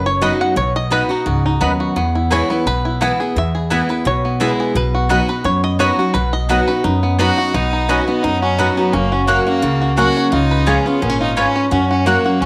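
Set in a moderate echo-chamber studio reverb, this joyful, driving, swung bluegrass excerpt opens with a twangy, up-front five-string banjo solo, backed by a bright, full-bodied dreadnought guitar, a thumpy gut-string upright bass and woody double-string mandolin stabs, until a clear, close bowed fiddle with light vibrato and slapback echo joins the melody at 7.2 seconds.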